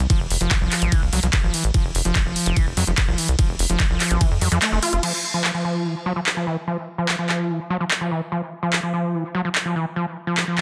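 Psychedelic trance with an alien, hypnotic mood, cut from a longer piece and opening on a drop where a tight, punchy sequencer bass drives under an overdriven, knocking electronic kick and a drum and bass kit with bright hats, handclaps, crash and ride cymbal. A squelchy, gritty acid bass riff, distorted with 12-bit sampler grit, sidechain pumping and dub echo, runs throughout, while the kick drops out at 4.6 seconds and the sequencer bass stops at 5.0 seconds, leaving the kit and acid riff in a second section. The sound is dense and heavily limited, with light digital ambience.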